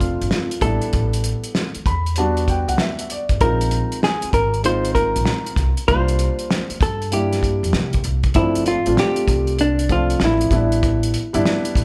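A lightly reverberant room sound, with the band playing live together, frames this brief cut from a longer piece: a nocturnal, cool jazz-hop groove at 97 BPM in 4/4, with a 65% swing on the sixteenths and set in G dorian. The cloth-damped drum kit sits up front with a thuddy, fat snare, a tight kick and hi-hat, all with a rolled-off top, while a woody pizzicato upright bass on steel strings holds the low end. A mellow concert grand piano with deep bass and short sustain gives smooth, vintage-toned accompaniment and plays a fill from 1.6 to 3.4 seconds. The clean, compressed hollow-body electric guitar, fingered and dark, carries the melody up front and takes a solo from 8.4 seconds onward. The harmony moves through suspended ninth chords, G9sus4, A9sus4, Bb9sus4 and C9sus4, before returning to G9sus4 and A9sus4.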